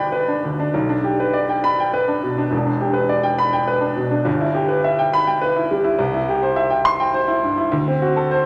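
Passionate and warm, this brief romantic character piece for solo piano moves in 3/4 at 103 BPM with an uneven, rubato feel in G major, tuned to A4 = 444 Hz, as a smooth, vintage-toned grand sits up front across a range from E1 to C6 in a wet recital hall reverb, passing from G through Em7 and C to a closing D7 within its 8.5 seconds cut from a longer work.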